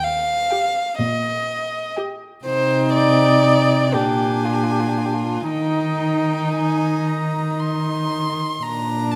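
A cello and a second violin open together, the cello full of vibrato with a smooth top and the violin playing a sul tasto inner line with an airy bow, both close and up front. At 0.5 seconds a rich, high first violin melody and a nasal viola accompaniment join, every player bowing softly and the upper three using light vibrato in an intimate, serene slow romantic movement in Eb major, drifting in rubato 6/8 at about 38-43 BPM through Eb, Cm, Bb7 and back to Eb. The quartet sits in a wet scoring-stage reverb, and the second violin drops out at 8.1 seconds as the harmony turns to Bb at 8.6 seconds in this short passage from a longer piece.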